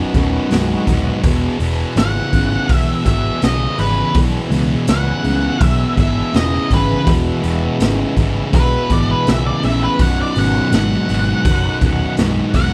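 Gritty and swaggering, this excerpt of blues rock and southern rock rolls at 82 BPM in a straight 4/4, moving from B to E at 1.2 seconds and back to B at 10.0 seconds. A bright, double-tracked fuzz guitar riff sits up front over a dark, round, foam-muted picked bass and a raw garage drum kit of boomy kick, medium-tuned snare and hi-hat, saturated in a small pumping room with a rolled-off top. A tonewheel organ holds full, lightly overdriven chords on slow rotary speaker in the background, and from 2.0 seconds an octave-fuzz lead guitar plays its shadowy solo melody through tape echo, all under light reverb.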